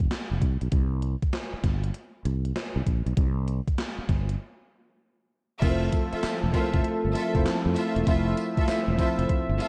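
A gated 80s digital drum machine drives this bouncy, upbeat new jack swing excerpt, its thumpy kick and overdriven, gated-reverb snare sitting up front with sampler grit alongside handclaps, hi-hat, tambourine and crash cymbal, all with a swung sixteenth-note feel. A growly fretless electric bass holds the low end from the start, direct and close beside the drums. After a break at 4.4 seconds, the second section opens at 5.6 seconds on an Fmaj7 chord. There a bright, bell-like tine electric piano with lush chorus, a bold, brassy analog pad with detuned sawtooth tone, a filter swell and a moving notch, and smooth stabs from a rich studio string section with diffuse ambient delay all enter together. The strings sit lowest in the balance, adding a bowed, vibrato-laden sheen above the rhythm section. Light reverb gives the whole short fragment a polished R&B gloss.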